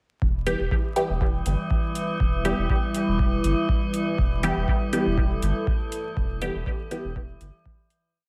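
Vinyl crackle and a light reverb frame this short dub techno piece, a hypnotic, meditative groove in E minor at 121 BPM in 4/4 with a slight swing on the sixteenths. A deep electronic kick, re-recorded in a large room and placed up front, drives a four-on-the-floor pulse from 0.2 seconds. Beside it runs a round, nasal analog bass riff that stays low and syncopated, while dark, layered closed hi-hats play a programmed pattern with a backbeat. Sparse, resonant chord stabs built from one sawtooth-and-pulse shape moved in parallel echo through phaser and dub delay, shaped by a filter sweep that runs the whole length. A moody, detuned pad with slow attack, chorus and its own reverb holds sustained chords, and an eerie, warbling FM drone with a metallic, inharmonic colour sustains a held high note; pad, drone, bass and stabs pump with sidechain compression. The piece rests on a single E minor chord and fades out from 5.5 seconds to its close at 8.2 seconds.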